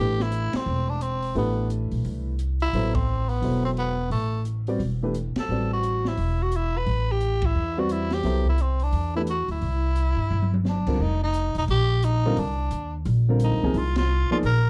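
Modal jazz at a swinging 174 BPM with a searching, spiritual mood, as a raspy, growling tenor saxophone carries the melody up front over open baby grand piano chords, a woody, thumpy upright bass and a smooth drum kit with dark cymbals, a high-tuned snare and boomy kick, the band hitting shared accents before a drum fill at 10.3 seconds ushers a shift from A dorian to F dorian at 11.0 seconds, all in a dark production with light reverb.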